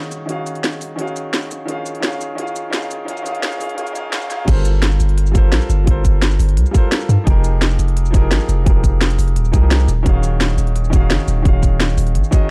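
A dark, dry production with a high-pass filter on the whole mix opens this short cut from a longer liquid drum and bass track, soulful and dreamy at 172 BPM in G phrygian. A smooth, vintage grand piano sits low in the mix with tape echo, voicing extended minor chords that move from Ebm11 to Bbm7 during the build-up. Underneath, a deep, sine-like 808-style bass with a fast attack and long decay sits up front, while a layered electronic kit supplies a cracking snare, crisp hi-hats, shaker and crash cymbal with a tape-warmed edge. At 4.5 seconds the drop arrives as a tight electronic kick joins, and the harmony shifts to Gm11, then Fm11, before returning to Ebm11 near the end.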